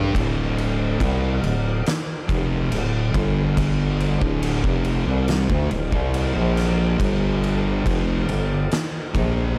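Brooding and hypnotic, this short excerpt of stoner and doom metal crawls at 70 BPM in 4/4 with a straight feel, rooted in D minor and moving between D minor and G5. Two thick fuzz guitars play picked, distorted riffs from the start, sitting in the background, one with a warm edge and the other darker. A growling FM bass, thick and sine-based with a fast attack and long sustain, sits up front with tube saturation, reaching down to D1. The oversized, low-tuned acoustic drum kit enters at 0.1 seconds and stops at 9.4 seconds, its boomy kick, fat snare and dark crash cymbals sounding gritty and saturated in a bright stone room that pumps around them. The production is dark with little reverb, keeping the heavy low end close and dense.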